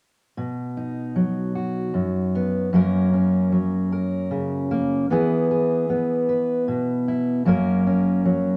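Pastoral and hopeful, this short folk excerpt in 6/8 features a lone fingerpicked steel-string acoustic guitar, a dark, full-bodied dreadnought sitting up front. It moves through a simple progression of B, F#, E and back to F#, with the guitar playing from 0.4 to 8.6 seconds. A moderate large-studio reverb adds a sense of open space around the instrument.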